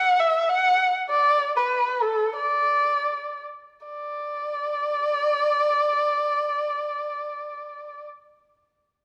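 A lone bowed erhu opens this short cut from a longer piece of Chinese traditional music, its dark, expressive tone sitting up front yet sounding slightly distant as it sings with vibrato and portamento. The mood is pastoral and graceful, with the line slowing from 1.1 to 3.9 seconds before a new section begins at 3.9 seconds. Light reverb and a dark, warm production surround the single player.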